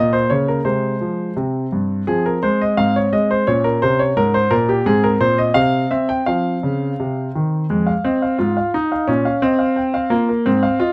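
The recording is close and detailed, with very little reverb, so the solo grand piano sounds intimate and up front, and the audible action noise of its keys adds a natural touch. This brief classical-period sonatina passage, cut from a longer piece, runs about 10.9 seconds in a straight duple metre and carries a cheerful, elegant mood. The piano covers a span from F2 up to G5, its clear tone keeping each note distinct. The harmony moves through Bbm, Fm/C and Abadd11 to Bbm7 and Abadd9, then briefly drops out of chordal harmony before settling on an open F5 sonority. At 7.7 seconds the opening section begins again, turning from Fm through Fm/Ab to a closing Bb5 as the clip ends.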